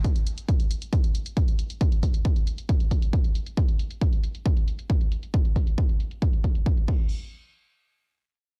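Driving peak-time techno at 136 BPM in a straight 4/4, hypnotic and intense, this short excerpt pairs a heavy, layered electronic kick drum sitting up front with a fainter techno drum kit of crash cymbal and hi-hat, whose hats and cymbals pump against the sidechain while hats, snare and cymbals sit under low-pass filtering. Both parts play from 0.0 to 7.0 seconds with a large-room character, little reverb and a dense, heavily limited modern master.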